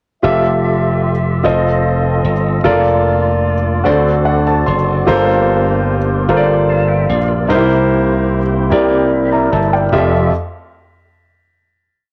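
A home cassette recording with light studio reverb carries this hopeful, reverent slow gospel piece in 6/8: a clear, intimate grand piano with audible action noise plays close-voiced chords in quarters with grace notes and a short fill at 3.9 seconds, a fat tonewheel organ with key click and a slow rotary speaker holds drop-2 chords, a very quiet French horn section with light vibrato sustains a tight pad, and a punchy, bright slap bass sits up front, playing on into the final chord that rings from 9.9 seconds.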